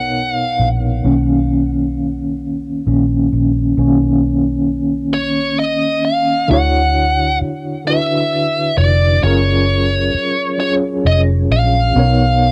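A home cassette recording in a small booth gives this slow 6/8 R&B excerpt at 44 BPM a close, sensual and tender feel, moving through Bmaj7, Dmaj7 and F#maj9 chords. A worn, slightly out-of-tune tine electric piano with medium tremolo through a combo amp plays throughout and takes a solo from 1.0 to 6.5 s, over a dark, round, foam-muted fingered electric bass with a punchy, amped tone. A bluesy overdriven lead guitar, picked and distorted with a cassette-tape colour, carries the melody briefly at the start and returns at 5.1 s to lead through to the end.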